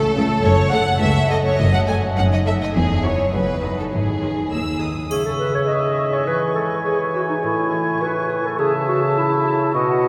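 Magical and mischievous, this playful, whimsical film cue in 2/4 is cut from a longer piece and set in a cavernous cathedral reverb. For roughly the first five seconds, a string ensemble carries the music: a very quiet, lush violin section sings the high melody with expressive vibrato, and an up-front violin section adds a smooth, even second line. Violas fill in the background, while cellos and double basses hold a rich, bowed bass. A fingerpicked concert harp rings out arpeggios through the whole cue. As the strings fall away, the woodwinds enter at 5.1 seconds: an airy flute group with a crisp attack, a clear oboe and a mellow, distant clarinet share the second line above a punchy bassoon accompaniment, while a small-room triangle adds a bright glint until 6.2 seconds.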